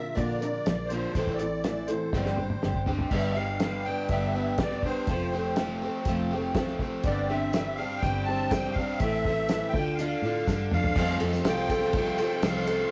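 A straight 4/4 pulse at 122 BPM drives this nostalgic, open-road folk and heartland rock excerpt, carried by a cloth-damped, thuddy drum kit with a fat snare and dark cymbals, with fills at 2.1 and 10.5 seconds, over a round, foam-muted fingered bass. Up front, a shimmering, octave-doubled twelve-string acoustic guitar with fresh strings and audible finger squeak supplies the accompaniment. A bright, double-tracked overdriven electric guitar plays a riff, a reedy, close-miked musette accordion carries the melody, and a jingly tambourine joins in the background at 7.5 seconds, all in a rough rehearsal-room sound with saturation and moderate studio reverb.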